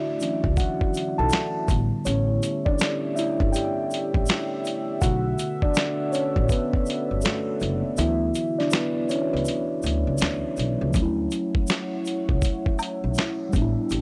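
Lo-fi hip hop at 81 BPM in D major with a swung 16th feel, nostalgic and cosy, cut from a longer piece and captured dry with a raw hardware sound. Muted, felt-like synth keys sit up front with a cassette-tape softness and take a solo until 10.9 seconds, over a deep, moody analog pad with chorus and phaser, a pizzicato upright bass with a woody growl, and an egg shaker and woodblock. The overdriven sampler-style drum kit brings a thumpy kick, fat snare, hi-hat and finger snaps with 12-bit grit, and the kick drops out from 8.0 to 10.9 seconds before a rootless Dmaj9 opens the final section.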